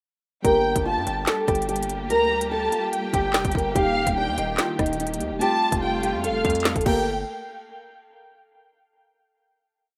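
A rough home-demo mix in a moderate studio room carries this tense, menacing drill hip hop piece at 145 BPM in a half-time 4/4 feel in G minor, playing a single hook from 0.4 s to 7.1 s before a final hit. A fingerpicked nylon-string guitar loops a small, dark melody under plate reverb, while a lush violin section with portamento and tape echo adds a sparse counter-melody. Muted, felt-like synth keys hold close chords with chorus in the background, and a symphonic string section sustains a bowed pad. Up front, the drill kit pairs a hard-clipped kick and a woody snare layered with clap with crisp skipping hats and fast rolls, as a distorted, saturated 808-style bass follows the kick with long sliding sub notes.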